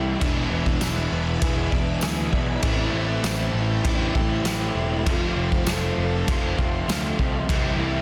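Wistful and hazy, this brief shoegaze and dream pop rock excerpt moves at 99 BPM in 4/4 over E7, Am7, F and C6, led by a velvety, detuned synth melody with chorus and analog delay, while a swirling, warbling string machine with ensemble chorus and phaser holds sustained chords behind it. Three background guitars churn out riffs, one bright, double-tracked and overdriven, one lo-fi and slightly broken-up through a small old amp with reverse reverb, and one hollow-body with analog chorus, alongside very quiet twangy clean arpeggios and a punchy fuzz picked bass. A gritty, saturated garage drum kit sits up front with a pumping small-room sound, dark cymbals and a rolled-off top from 0.2 seconds, joined by a jingly, dry tambourine from 0.8 seconds, all within a dense, heavily limited modern master with light reverb.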